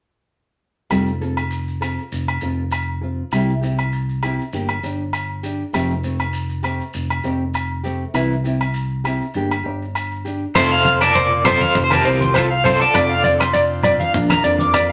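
Highlife guitar band in F major at 100 BPM with a light swing, sunny and danceable, this excerpt opens at 0.9 seconds with a full-bodied, fingerpicked nylon-string guitar over a round, dark fingered electric bass, ringing agogo bells and grainy maracas. At 10.6 seconds two twangy, slightly broken-up electric guitars with tremolo arrive up front, one carrying a melody and the other high arpeggios, joined by a damped 70s drum kit with a tight kick, rim clicks, hi-hat and crash, with low-tuned congas played with soft hands following at 10.8 seconds. From 10.5 seconds a buzzy combo organ holds sustained chords in the background, all set in a wet studio reverb as the harmony moves from F through Dm7/F to Bb.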